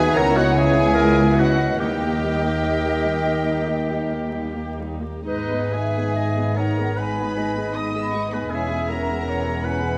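From the first moment, a chamber violin section carries an elegiac melody in G# minor over a second violin line, a bright, present solo clarinet, an airy flute ensemble and a distant, roomy oboe. Beneath them, violas bowed sul tasto, a mellow French horn section holding sustained chords, and dark cello and double bass sections supply the accompaniment and bass. This melancholic classical passage moves in a rubato 4/4 at 60-80 BPM through C#m7, D#, G#m and C#m/E, set in a wet concert hall with a layer of vinyl crackle.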